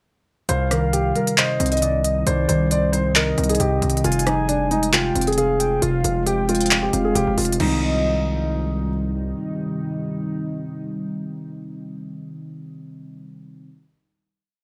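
At 0.5 s a mellow concert grand piano loop with audible action noise and plate reverb opens this brooding, eerie half-time trap piece at 135 BPM in C minor, joined at once by a round, octave-layered synth lead carrying a sparse counter-melody with vibrato, chorus and tape echo, muted felt-like synth keys playing a pedal-note eighth-note arpeggio, a heavy, distorted 808-style bass with long sub notes, and an overdriven, up-front house drum kit of crisp hats with fast rolls, handclaps, rim clicks and crash, while a deep, detuned ambient pad enters in the background at 2.2 s before a final C minor chord at 7.6 s, with the keys sounding until 13.7 s.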